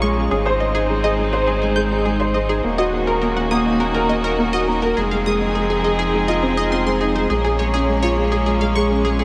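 From the opening moment, a dark, mellow baby grand piano sits up front with a riff, colored by ensemble chorus and analog delay. Beneath it, a muted string quartet holds veiled, bowed chords with light vibrato, one player per line. A detuned, wave-folded analog pluck spins bright arpeggios above, roughened by vintage 12-bit sampler grit and trailed by its own chorus and analog delay. A deep, round sine sub bass anchors the low end. This moving, intimate piano and strings electronica sits in Bb minor at 103 BPM in a straight 4/4, cycling through Ab, Ebm7, Fm7 and Bbm7 across a 9.2-second cut from a longer piece, with the whole dreamy mix soaked in a huge ambient reverb.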